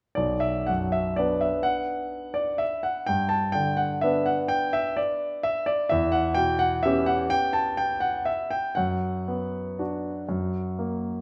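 A polished concert grand sits up front in a wet recital hall, its clear tone and deep bass carried by a 1.3-second reverb. This nostalgic, elegant classical waltz in B minor moves in 3/4 with a rubato feel, drifting between 114 and 136 BPM as the solo piano plays from 0.2 to 11.2 seconds across a range from B1 to A5. The harmony passes from Bm through G and C#m7b5/E to Bm/F# before settling on F#, in a short cut from a longer piece.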